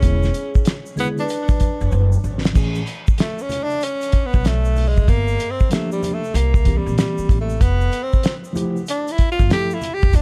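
Cool and smooth, this jazz-hop excerpt moves at 95 BPM in 4/4 with a swung sixteenth-note feel, its tuning sitting a touch sharp at A4 = 441 Hz. A cloth-damped, thuddy drum kit sits up front with a fat snare, tight kick and dark cymbals, while a woody pizzicato upright bass carries the low end and a mellow tine electric piano fills in chords through its built-in speakers. A vibraphone played with medium mallets rings metallically in the background for the opening 2.1 seconds, and a distant tube shaker and congas add a bright, roomy shimmer beneath everything else. The breathy tenor saxophone, clear with light vibrato and touched by tape echo, carries the melody from the start, and after a drum fill it takes a jazz-style solo from 2.6 seconds as the harmony moves from Amaj7 through Gm7 and C7 to Fmaj9. The dark production keeps the sound close and dry, with little reverb.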